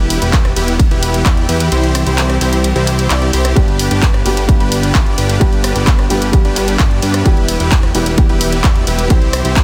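Triumphant and uplifting, this 9.6-second cut from a longer festival progressive house track drives at 130 BPM in G major, with a huge, detuned supersaw riff carrying delay and sidechain pumping over a fat analog bass and clear, bowed strings holding sustained chords in the background through an Em, C, G progression. A punchy, overdriven electronic kick sits up front alongside a house kit of handclaps, hi-hat, ride cymbal and rim click, though the kick drops out between 1.7 and 3.6 seconds. At 3.6 seconds a dark, mellow baby grand piano joins in the background with audible action noise, all within a dense, heavily limited master with little reverb.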